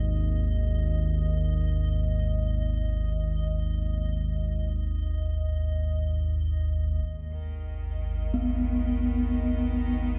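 A deep, rumbling drone opens this desolate dark ambient piece in G# minor, sitting up front in free time with an ominous, warbling, wave-folded character, while an icy glass pad hovers faintly above it with an airy, crystalline shimmer of chorus. The drone dominates the mix, and the pad remains a distant, bright glint. At 7.1 seconds a filter sweep begins on the synth drone and a bright studio cello section enters with sustained, bowed chords carrying light vibrato and an intense, close presence, shifting the harmony to G# minor. At 8.3 seconds a gamelan-type bronze metallophone joins with ringing, metallic arpeggios struck by a wooden mallet, its paired tuning producing shimmering beats. A huge ambient reverb with a long 7.3-second tail gives the dark production a cavernous depth, and the passage is cut from a longer piece.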